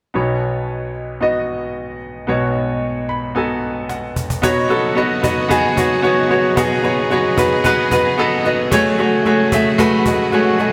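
A clear, up-front concert grand piano with deep bass and a lush chorus drives this bittersweet, earnest piano pop fragment at 112 BPM in a straight 4/4, moving from Badd9 to F#madd9 and adding fills around 2.8 seconds and again near 7.6 seconds. A snappy cajon played with soft hands enters at 3.9 seconds with a short fill, and a bright, focused studio string section holds bowed, vibrato-laden sustained chords from 4.4 seconds as the music shifts into its second section. The polished 1980s-style digital sound is bathed in a wet, lush hall reverb.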